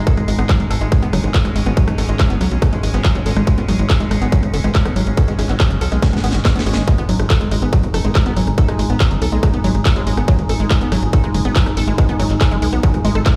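A resonant drone of sustained G#5 chords, with moving overtones, chorus, pumping and its own reverb, opens this driving, alien psychedelic trance excerpt in G# minor at 141 BPM alongside a tight, punchy sequencer bass of sawtooth and square waves up front. A woody, wave-folded pluck riff with chorus, cassette tape colour, digital delay and pumping arrives with a distorted, up-front electronic kick and a techno kit of cracking snare, hi-hat, handclaps and rim click, and a drum fill sounds at 6.0 seconds. A very quiet, formant-swept wobble bass drifts in at 1.2 seconds and again at 8.0 seconds, all set in a big, bare-room ambience with large studio reverb.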